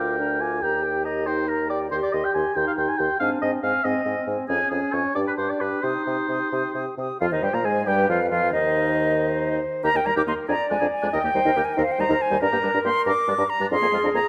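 A scoring-stage reverb of moderate size lends this short cut from a longer classical-period movement for wind quintet a resonant, dramatic air, its restless C minor unfolding in 6/8 at 92 BPM counted in dotted quarters, with a rubato feel. The concert flute carries the melody high above the group, airy and close-miked with vibrato, soft attacks and an expressive line. Beneath it the oboe sings a second line with light vibrato, set up front yet sounding distant and roomy, while the clarinet sits in the background as accompaniment. The French horn adds punchy accompaniment with a touch of vibrato, and the bassoon anchors the bass with warmth. All five play throughout, moving through an opening passage that passes through Eb, Ab and Db/F harmonies before turning at 7.2 seconds to a second section built around G7, C minor and F minor colors, closing on an open Bb7 chord at 13.7 seconds.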